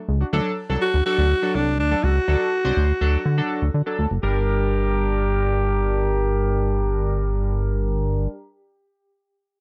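A dry, close 1970s-style studio sound frames this short, driving dance-pop cut, where a dark, saturated chorused synth bass sits up front from the first instant with its pulse-wave and sawtooth pluck. A glossy, bright chorused polysynth with an evolving filter sweep fills in behind it, moving from a D chord to G minor as the second section arrives at 4.2 seconds. At 0.8 seconds a raspy, punchy alto saxophone takes a confident, close-miked solo melody through a low-pass filter and tape echo.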